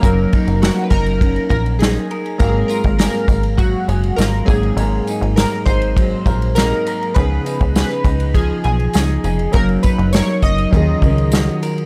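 Indie bedroom pop at 101 BPM with a mellow, lonely mood: bright, glossy chorused retro synth keys carry the melody through tape echo over a clean semi-hollow electric guitar with lush chorus and warbly pitch drift, round background analog keys, a punchy, nasal plucky analog bass and an up-front acoustic drum kit played with bundle sticks, joined by a jingly tambourine from 2.4 seconds, all moving through chords like Gb6, Ab13 and Ebm11 in a dry, gritty recording with transformer saturation, cut from a longer piece.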